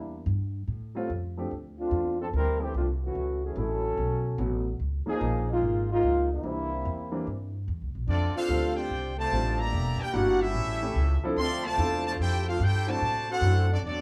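A warm trombone section carries this brassy, joyful jazz excerpt, playing a tight, up-front second line with light vibrato and a soft attack, and it takes a solo for the first 8.1 seconds. Beneath it, a woody, pizzicato upright bass with steel strings sits close and anchors the swung 146 BPM pulse in F major, while a natural-sounding baby grand piano adds quieter accompaniment from 0.9 seconds. At 8.1 seconds a bright, close-miked trumpet section enters with the melody, lifting the arrangement into its second part. The harmony moves through rich jazz colors such as Em7b5, A7alt, Db69 and F6, giving the short passage a restless, sophisticated motion. A moderate club reverb and small-room ambience lend the ensemble an intimate, live feel, and the clip is cut from a longer piece.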